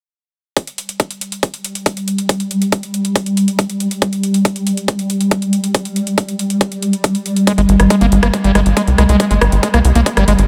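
A swarming, detuned drone holds tense sustained chords from 1.7 seconds under a filter sweep and sidechain pumping in this intense, driving psychedelic trance excerpt at 139 BPM, over a punchy, overdriven kick and a big-room electronic kit with metallic hats and rim clicks, until a squelchy, screaming acid riff cuts in at 7.5 seconds, joined by a tight, nasal, saturated sequencer bass, in a dreamy mix soaked in huge reverb.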